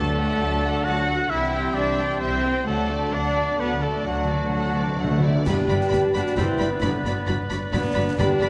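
A brisk 3/4 at 132 BPM with a straight feel drives this heroic, triumphant adventure film cue in G major, cut from a longer piece. Lush, bowed violins carry the melody with vibrato and a soft attack, while a warm cor anglais, a dark, very quiet clarinet, a mellow flute ensemble in the background and a second, very quiet violin line weave supporting parts. A clear, intense viola section accompanies, dark French horns and very quiet, mellow trombones hold sustained chords, and a distant, punchy trumpet adds stabs as a ringing, fingerpicked harp plays arpeggios. Rich cellos and a close, expressive double bass section anchor the low end, and round, calf-headed timpani with soft mallets play a fill from 2.7 s. At 5.5 s snare drum, clash cymbals with a dark tone and bass drum enter as the harmony settles onto G, all within a moderate concert hall reverb.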